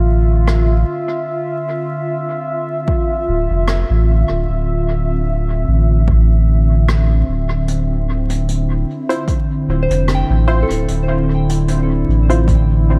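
A warbling, nostalgic tape-like pad sits up front, holding a sustained Dm9 chord with chorus and its own reverb over a deep, round sub bass in this hazy, spacious ambient dub fragment at 75 BPM in D minor, swung lightly on the sixteenths. Jazz brushes tap hi-hat and rim clicks through dub echo from 0.5 seconds, a punchy layered electronic kick joins at 2.9 seconds, and near the end a muted, gritty filtered chord stab and a soft, pure FM bell with tape echo drift in, all set in light reverb over vinyl crackle.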